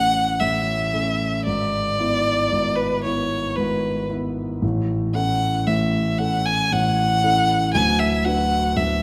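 Classical romantic duo for violin and grand piano, this short passage cut from a longer piece feels tender and lyrical, moving in a slow triple metre with a flexible, rubato pulse. A single bowed violin carries the melody up front, its tone rich, smooth and even, with vibrato and a close, present sound. Beneath it, a dark grand piano plays the accompaniment across a low-reaching range, mellow and intimate with a vintage character and audible action noise. Both instruments play throughout the 9 seconds, over a harmony that settles from the home chord through a dominant seventh and back before turning toward a minor chord at 7.7 seconds. A wet recital hall reverb surrounds the pair, lending the performance a spacious, resonant setting.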